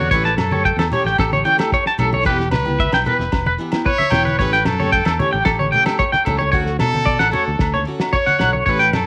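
A straight, danceable 4/4 groove drives this cut from a longer highlife guitar-band piece. It is anchored by a cloth-damped drum kit whose fat snare and tight kick sound dark, dry and rolled-off at the top. Ringing, low-tuned congas played with soft hands and saturated agogo bells join at 0.4 seconds and sit in the background, while a round, punchy fingered electric bass holds the low end. Up front, a twangy, clean electric guitar plays arpeggios through tremolo over a bright, picked dreadnought acoustic guitar that supplies the accompaniment. A trumpet carries the jazz-style solo melody with light vibrato and tape echo, its tone warm. The trumpet, both guitars and the drums carry a cassette-tape colour, and the band plays in a small room with light reverb, moving through A7, Em, A7 and Dmaj7 with a homemade feel.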